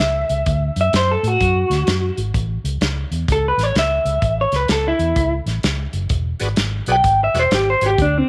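Light small-room reverb frames this gritty, soulful electric blues shuffle as it rolls along at 128 BPM in 4/4 with a swung eighth-note feel. Up front, a slightly broken-up, lo-fi, compressed electric guitar carries the melody through a small old amp, over a dark, round, punchy foam-muted fingered bass and a soul drum kit of hi-hat, tight kick and medium-tuned snare with a rolled-off top, moving from D to A and then E9. At 6.4 s a bright, shouting tonewheel organ slips in quietly with light overdrive, chorus vibrato and a slow rotary speaker, before this excerpt from a longer piece cuts off at 8.3 s.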